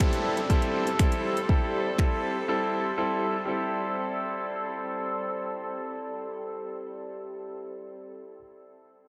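A deep house drum kit, with a deep kick, metallic hats and finger snaps, drives this bittersweet, energetic dance-pop fragment before dropping out at 2.1 s, and a silent gap follows from 2.5 to 3.5 s. Over an Am7 chord, a brilliant concert grand piano plays accompaniment while a woodwind section with light vibrato sustains chords, both pumping with sidechain and shaded by a low-pass filter, as a downlifter sits in the background. A huge ambient reverb soaks the mix in a dreamy haze.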